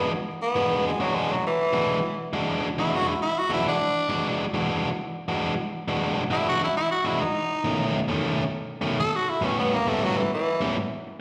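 Swung eighths at 135 BPM in 4/4 carry this laid-back, soulful blues in E mixolydian, a short cut from a longer live performance. A raspy, growling tenor saxophone takes a jazz-style vibrato solo up front, while a biting overdriven electric guitar plays a picked riff alongside it, also up front, both with slapback echo and both running from start to 10.8 seconds over E9, then B9 at 7.2 seconds and A9 at 9.0 seconds. The gig comes through the venue's PA into a recital hall's reverb, with a moderate plate reverb adding a long tail.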